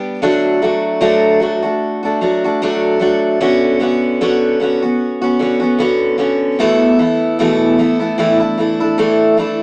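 A gently swung sixteenth-note lilt in four drives this heartfelt, easy-going pop fragment, cut from a longer piece, carried entirely by a solo picked steel-string acoustic guitar. The dreadnought sits up front with a full-bodied tone and audible finger squeak, moving from D through Bmadd9/D to suspended Esus4 and Asus4 chords that leave the phrase hanging at 9.6 seconds. Light reverb and a live-room, small-speaker sound give it an intimate, unpolished feel.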